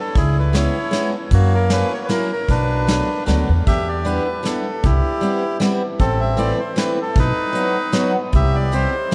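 A lilting, swung three-beat waltz sets the pulse in this nostalgic, bittersweet musette piece, cut from a longer performance. The reedy, airy bandoneon carries the melody from the very start, sitting bright and up front. Within the first second a soft brush drum kit with a punchy kick and medium-tuned snare joins, along with a woody, growly pizzicato upright bass that also sits forward in the mix. A picked steel-string acoustic guitar fills in the accompaniment from 0.5 s, with finger squeaks audible. The harmony turns to a new section at 3.7 s, and the whole ensemble rings out in a vast, echoing cathedral-like space.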